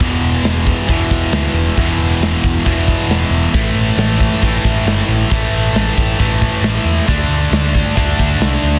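A double-tracked, distorted electric guitar sits up front, picking a bright, overdriven riff through this short, driving hard rock excerpt. Underneath it, a growly, amped electric bass plays a punchy picked line in the low register, pushing the aggressive feel in a straight 4/4. A big acoustic rock drum kit with a punchy kick, a medium-tuned snare and bright crash cymbals drives the groove until 8.5 s. The harmony moves from E5 to A5 at 3.5 s and then to D5 at 7.1 s. The mix has a small room ambience and a dense, heavily limited modern master that keeps the sound loud.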